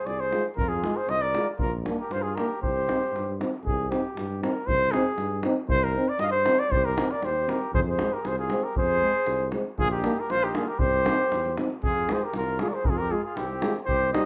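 A rough home demo mix soaked in wet studio reverb carries this fiery, virtuosic Balkan brass band fragment in 2/4, where a mellow, up-front trumpet sings the melody with vibrato in a classical style, a clear flugelhorn adds a second line that drops out between 3.4 and 6.7 seconds, a distant euphonium and a trombone fill in the accompaniment with plate reverb, a close-miked tuba holds down the bass, and a deep davul sounds from a large room.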